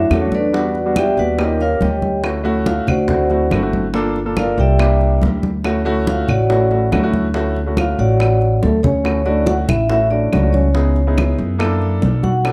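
A straight, danceable Afro-Cuban jazz groove in 4/4 rests on soft-handed congas with a thick skin, while round, low-tuned bongos and woody claves sit in the background and a growly pizzicato upright bass stays up front. A metallic, ringing vibraphone, its motor turning slowly, carries the sunny melody as a solo over the grand piano's natural-sounding jazz chords, and a mellow trombone with light vibrato joins as a second line at 8.6 seconds. Light reverb and a dark, warm production shape this fragment of a longer piece.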